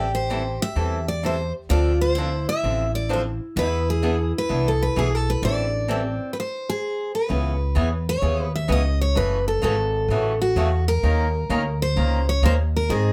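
A bright, freshly strung lead guitar sits up front and carries the melody from the start. Beside it, a woody concert guitar with old strings plays a second line until 6.3 seconds, over a boxy swing-style rhythm guitar and a thumpy, pizzicato upright bass with gut strings. This swinging, virtuosic slice of jazz manouche is cut from a longer piece and bathed in light reverb; after a stop at 6.4 seconds, the remaining three parts resume at 7.3 seconds in a new key.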